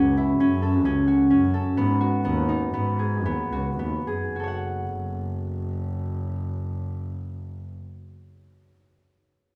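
In a straight 5/4 pulse somewhere between 105 and 134 BPM, this short excerpt from a longer contemporary instrumental piece slows down between 0.4 and 4.4 seconds, and its mood in F# dorian is urgent and restless. Up front, a ringing, fingerpicked concert harp plays warm arpeggios over F#m7 that settle onto F#m at 4.4 seconds, while a single double bass, bowed sul tasto with a soft attack, gives the low line a pure, floating, distant richness. A moderate recital hall reverb frames the two players.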